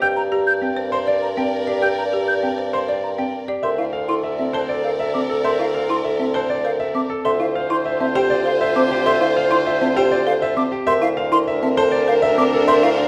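Classical minimalist pattern music with an urgent, hypnotic pull, in which a bright grand piano carries the melody with audible action noise, a dark, distant clarinet adds a second line in the background, a chamber string section holds rich bowed chords, a woody folk marimba and an airy, hollow silver flute spin arpeggios, and a mellow bassoon anchors the bass, all set in a wet scoring-stage reverb across this 13.1-second excerpt, with the harmony moving on at 3.6 seconds.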